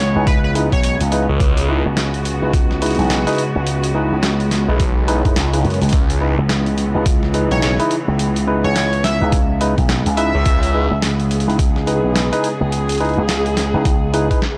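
A swung 106 BPM glitch hop groove in 4/4 rides on a thumpy, pitched-down electronic kick and a gritty, sampler-style boom bap kit of hi-hat and medium-tuned snare, with a drum fill at 14.4 seconds closing this playful, funky clip in C# minor over a C#m7 chord. A punchy slap bass with an envelope filter sits up front beside a swirling, detuned saw bass with phaser that enters at 1.3 seconds. A barky tine electric piano plays stabs and a smooth studio string section holds sustained chords, both pumping from sidechain, while an edgy, tearing sync lead with chorus and analog delay carries the melody, returning at 7.5 seconds, all in a dry, lightly reverberant hardware sound.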